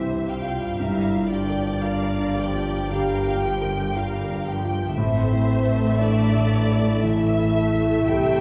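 Moving and sorrowful, this short cinematic passage, cut from a longer piece, unfolds in G dorian at a slow, rubato 58 BPM in 4/4. Two muted violin sections carry the melody and a second line from the opening, their con sordino tone dark and veiled, with vibrato and a soft attack, while a distant, lush viola section fills in the accompaniment. A concert grand piano sits in the background with intimate, natural sound, long sustain and audible action noise, and a mellow French horn section holds sustained chords from afar with light vibrato. Cellos and double basses anchor the low end, the basses rich and bowed, the cellos smooth-topped and receding. The harmony moves from C to Gm7 at 0.8 seconds and settles on Am at 5.0 seconds, all within a roomy church or concert hall acoustic bathed in a generous 1.6-second reverb.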